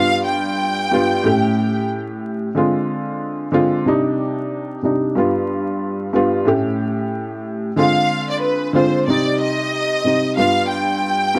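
A tough, gritty hip hop excerpt cut from a longer piece, moving at 92 BPM in 4/4 with a 60% swing on the sixteenths and set in C harmonic minor. A dark upright piano carries the accompaniment throughout, its woody, slightly detuned tone sitting up front with audible action noise and a cassette-tape coloring that gives it a vintage, intimate character. A lush studio violin section plays the melody, bowed with vibrato in a smooth, even ensemble sound treated with slapback echo and plate reverb. The strings appear briefly at the start, drop out at 1.9 seconds, and return from 7.8 seconds to the end. The harmony cycles through G7, A7, Dm7b5 and C minor chords, and the whole sits in a moderate small room with a layer of vinyl crackle.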